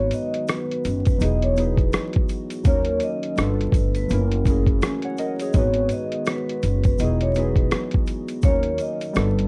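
A muffled, overdriven sampler-style drum kit with a thumpy kick, hi-hat and rim click leads this nostalgic, reflective lo-fi hip hop fragment at 83 BPM in G# minor with a swung 16th feel. A woody pizzicato upright bass sits up front beside it, while a soft-mallet vibraphone carries a ringing, airy melody with medium motor vibrato over warbling, chorused synth keys. A deep, detuned analog pad with chorus hums in the background, and a grainy, distant egg shaker adds texture from 0.1 seconds. The dark production wears light reverb and vinyl crackle as the chords move from G#m7 through Emaj9, D#m7, G9 and F#7.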